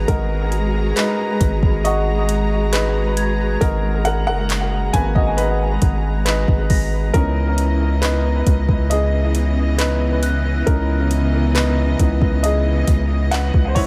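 Contemporary R&B at a slow 68 BPM in G# minor, this moody, longing excerpt moves from G#m9 to C#m9 at 7.1 seconds, with an intimate, worn baby grand piano taking the solo spotlight, its audible action noise and dub echo up front over a lush, bowed string section. A deep, sine-like 808-style bass and a soft, produced drum kit of kick, metallic hi-hat and handclaps sit forward in the mix. A delicate, bell-like celesta with dub echo rings in the background until 11.2 seconds, all inside a small, echo-heavy room.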